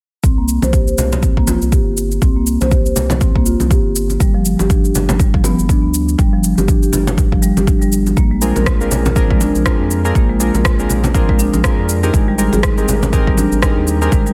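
Light reverb gives this afro house passage, cut from a longer piece, a close and tidy sound, with the deep, tape-warm electronic kick sitting up front. The mood is hypnotic and driving in a swung 4/4, built on a round, dark analog bass that pumps against the kick through sidechain compression. Soft-mallet marimba on rosewood bars carries woody, mellow arpeggios through the whole passage, shaped by a filter sweep, a low-pass filter, tape echo and sidechain pumping, over chords moving from C5 to G5, Bb7 and Abmaj7. Electronic cabasa and rim click add a produced top layer, and ringing, medium-tuned acoustic congas from a small room join at 0.6 seconds. At 8.4 seconds, analog keys mixing pulse and sawtooth waves bring short decaying stabs coloured by chorus, tape echo and pumping.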